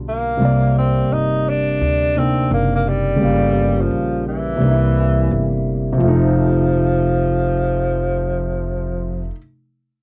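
Nocturnal and smoky, this short hip hop cut from a longer piece moves at 86 BPM with a swung sixteenth-note feel, built on a dark, mellow grand piano with audible action noise and a cassette-tape tint, and a thumpy, woody upright bass on gut strings played pizzicato with a touch of tube saturation. A breathy tenor saxophone carries the melody up front in a whispered jazz style, using subtone, vibrato and scooped notes over chords that move from Cm9 through Gm7b5 and C7 before settling on F7 at 6.0 seconds. The whole piece sits in a moderate booth ambience with the character of a home cassette recording.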